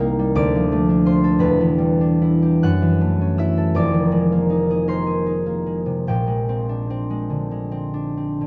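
Classical solo concert harp in a rubato 6/8, graceful and dreamy, in a brief excerpt cut from a longer piece. The fingerpicked harp sits up front with a ringing, warm tone, spanning from E1 up to Gb6 as it moves through Dm7, Em7, Gbm7 and Fm7 before settling on Bb13 at 6.1 seconds. Light reverb and a dark production round off the sound.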